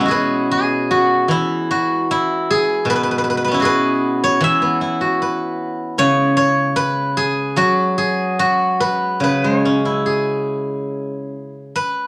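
Rubato phrasing floats loosely around 71-78 BPM in 4/4, giving this short cut from a longer Chinese traditional piece an unhurried, breathing pulse. A steel-string zither plays alone for the full 12.1 seconds, its acoustic, fingerpicked tone ringing and silvery as it moves through the E gong mode across a span from B2 to C#6. The mood is elegant and pastoral. The zither sits up front, with a cassette-tape character colouring its sound. Light reverb and the ambience of a small room lend the home recording an intimate, close-at-hand feel.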